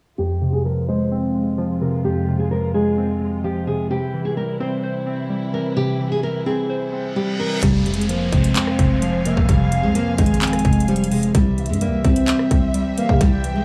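Hip hop in a trap style, this menacing, hard-hitting excerpt moves at 129 BPM in a half-time feel, set in F harmonic minor over a simple shift between Fm and C. From 0.2 seconds a fingerpicked nylon-string guitar carries the melody with full-bodied, fresh-string tone under a low-pass filter and analog delay, while detuned, warbling lo-fi synth keys with chorus sit up front as accompaniment and a quiet, bowed string section holds soft sul tasto chords with vibrato. A filter sweep runs through this opening stretch, and a reverse cymbal and downlifter enter in the background to lead into the second section. At 7.6 seconds a buzzy, growling 808-style bass and an up-front trap kit arrive, the kit bringing a hard-clipped kick, metallic hi-hats, handclaps and rim clicks. Soon after, a smooth, wave-folded portamento lead glides in a high register with chorus and delay. The sound is dry and gritty, with a digital studio ambience.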